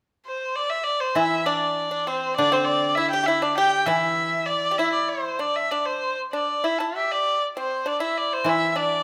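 Captured with close, detailed microphones in a moderate recital hall reverb, this pastoral, graceful excerpt of Chinese traditional chamber music at 99 BPM in 2/4, played with a rubato feel and tuned to A4 = 438 Hz, opens with an up-front, earthy bowed erhu melody from 0.3 s, carrying light vibrato and portamento, before a bright, dry and percussive fingerpicked pipa second line and a ringing, silvery guzheng accompaniment join at 1.2 s, with the guzheng pausing at 5.7 s and returning near the close.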